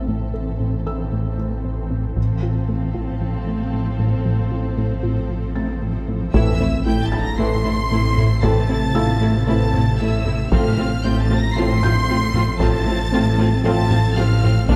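A straight 4/4 pulse drives this relentless, futuristic hybrid orchestral and electronic film cue, where expressive violins with portamento carry the melody over a focused studio violin line, distant violas, a blurred granular cloud pad, a punchy sub bass, smooth cellos, lush double basses, a felt-muted upright piano echoing through delay, soft plucked arpeggios and a round analog bass riff, all opening under a filter sweep before a brief taiko passage at 2.2 seconds and then, from 6.3 seconds, close, dry taiko drums, mellow French horns, very quiet trombones and a huge sub-drop impact fill the scoring-stage reverb.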